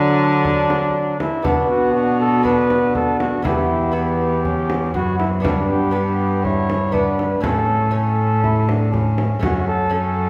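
Festive yet stately, this short cut from a longer renaissance-style consort dance moves at a straight 120 BPM in 4/4, tuned to A4 = 437 Hz and shifting from D through Bm, Em, G and A to F#m. A mellow, smooth-topped cornet carries the melody up front over a brilliant, vintage-toned trombone, both with light vibrato, while a rich, reedy bowed cello with gut-string tone sits forward on the bass and a bright, delicate fingerpicked lute with doubled nylon strings fills in the harmony. A deep frame drum played with soft hands enters at 0.4 seconds and stops at 9.7 seconds, and the whole consort is heard from further back in a recital hall with a 1.6-second reverb.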